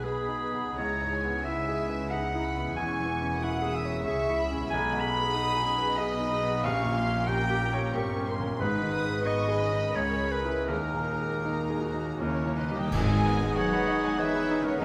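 A bright, brilliant concert grand piano carries the melody of this passionate, tragic romantic movement in G# minor, a rubato 3/4 at 79-99 BPM, joined by a floating symphonic violin section above a clear clarinet and a studio violin section on second lines, with woody violas, dark double basses and an intimate, very quiet cello section beneath, the strings bowed sul tasto. At 8.6 seconds timpani, a cymbal swell, clash cymbals and concert bass drum come in, and a timpani fill at 12.2 seconds brings a mellow, distant flute and a warm oboe. The harmony moves to D# before a band accent at 12.9 seconds lands on G# minor as a roomy French horn section and a tuba enter, the whole set in a moderate scoring stage reverb.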